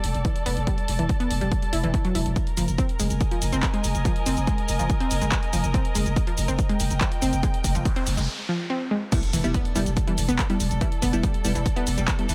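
Dark and relentless, this driving peak-time techno cut runs at 142 BPM in a straight 4/4, taken from a longer piece. An overdriven electronic kick sits up front and heavy, while a punchy analog drum machine with a tape-warm tone adds hi-hat, shaker, handclaps and crash cymbal. Beneath them a growling, buzzy 808-style bass holds low between E1 and F1, overdriven, low-pass filtered and pumping against the sidechain, as a bright, detuned unison pluck with tube saturation and tape echo carries the riff and a veiled, con sordino chamber string section hovers above with soft-attack vibrato. The harmony moves from a chordless opening to Fm at 2.4 seconds, then a noise sweep runs from 7.8 seconds into a short break before the drop lands at 9.1 seconds on Em with an electronic impact. At that point a crisp, warbling wavetable chord stab enters with a moving notch filter and digital delay, pumping alongside the bass, pluck and strings. 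The sound is dry and close, with little reverb, keeping the mix tight and forceful.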